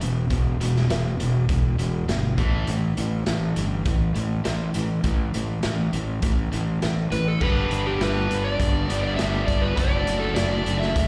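Heard as a live gig through the venue's PA, this swaggering, brooding classic rock excerpt at 101 BPM sets a growly, fuzz-soaked fingered bass and a gritty, saturated garage drum kit with dark cymbals and a punchy kick up front, beneath a bright, tight distorted guitar riff with slapback echo in the background and a very quiet, sludgy guitar riff, and at 7.1 seconds an overdriven slide guitar joins them with the melody as the chords move from E5 and A5 to G and D/F#.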